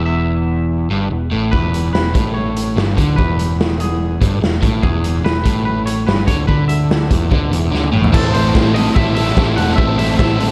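A twangy clean lead guitar with subtle chorus and tape echo rides over a crunchy, spring-reverbed rhythm riff and a round hollow-body bass in this upbeat, carefree indie rock cut at 145 BPM, with a gritty, punchy garage drum kit in a bright stone room kicking in at 1.5 seconds, and a fill leading to the shift from E5 to A minor at 8.1 seconds, where a buzzy vintage combo organ and a second overdriven, chorused guitar riff join quietly in the background.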